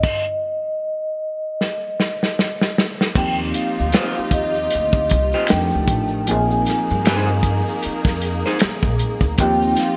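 A bright, 1980s-style digital production with light reverb and small-room ambience frames this relaxed, sensual R&B and neo-soul excerpt in a gently swung 4/4. Over an open opening, a mellow soft-mallet vibraphone with fast motor vibrato carries the melody while a clean, bell-like tine electric piano with analog chorus accompanies, and the up-front, muffled lo-fi soul drum kit, with dark cymbals, a tight kick and gated reverb, plays a fill from 1.6 seconds. At 3.2 seconds the groove opens out as a woody pizzicato upright bass, a lush bowed string section, and a vintage, band-limited egg shaker and finger snaps arrive, and at 3.9 seconds a slightly broken-up electric guitar through a small old amp adds a picked second line over Eb6/9, F13 and Bb9sus4 harmony.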